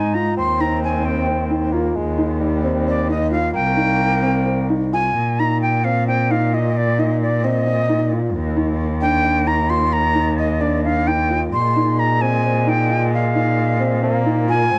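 Captured as a home cassette recording in a small room with light reverb, this hypnotic, urgent fragment of contemporary chamber music in 7/8 sets an airy, expressive jazz flute with vibrato up front on the melody over a dark, woody bowed cello bass, while a thick-felted upright piano plays mellow, short-sustained arpeggios touched with tape echo, and a clear, classical-style bassoon adds a second line that drops out at 4.9 seconds and returns at 11.5 seconds.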